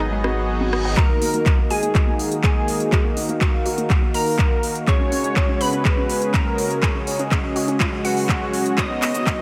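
Progressive house at 123 BPM in Eb minor, this driving, dreamy passage is cut from a longer piece and moves through a build-up over chords of Abm, Ebm, Dbsus4 and Badd9. A lush supersaw pad sits in the background with sustained chords, roughened by vintage 12-bit sampler grit and shaped by sidechain pumping and a low-pass filter, while a soft, airy supersaw plays stabs through tape echo. A thick, bold unison lead carries the melody from 0.2 seconds, and from 1.0 seconds a glassy, crystalline wavetable pluck adds a nasal second line high above, coloured by chorus and cassette tape. Underneath, a very quiet analog pluck spins detuned arpeggios and a round, mellow analog bass holds the low end. A brief opening of tape-warm rim click, congas and cowbell is joined by a reverse cymbal, and from 1.0 seconds an overdriven, deep electronic kick drum sits up front alongside a house kit of handclaps, crisp hi-hats and shaker. 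A drum fill and filter sweep build toward a riser at the close, all within light reverb and digital ambience.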